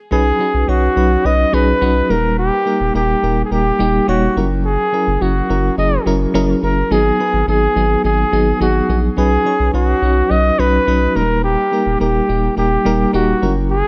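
Urgent and dramatic, this 1980s-style pop excerpt moves at 106 BPM in a straight 4/4, tuned to A4 = 442 Hz. A mellow flugelhorn carries the melody up front from 0.1 to 13.9 seconds, its vibrato and smooth top giving the pop-style solo line a polished voice, with a touch of digital delay. Beneath it, an FM electric piano supplies the accompaniment, its tremolo and faint noise layer colouring chords that strike quickly and then decay. A saturated sub bass, deep, thick and sine-based, holds sustained low notes near the front until 13.8 seconds. Light reverb and a small room ambience frame a progression of Badd9, D#, F#7 and G#m7 that circles back to Badd9 and D#.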